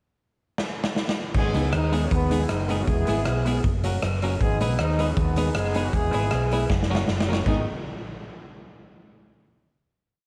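This is a short, complete ska piece at 157 BPM in G# minor, and it starts with the rhythm: a raw garage drum kit kicks in with a fill at 0.6 seconds and then settles into a ska beat with a side-stick backbeat, its punchy kick and medium-tuned snare sitting up front with a gritty, saturated edge and a rolled-off top. At 1.4 seconds the hollow-body short-scale bass joins with a dark, round, amped walking line with slides, and moments later, at 1.5 seconds, a clean, compressed electric guitar and a woody upright piano with audible action noise add off-beat chops in the background. A mellow horn section carries the driving, mischievous tune in tight octave doubling, playing motif-based phrases with vibrato that sound distant and roomy, and its slapback echo matches the one on the drums. The harmony cycles through G#m, E and F# twice. A second drum fill at 6.7 seconds leads to a final G#m chord that rings out in moderate spring reverb and small-room ambience.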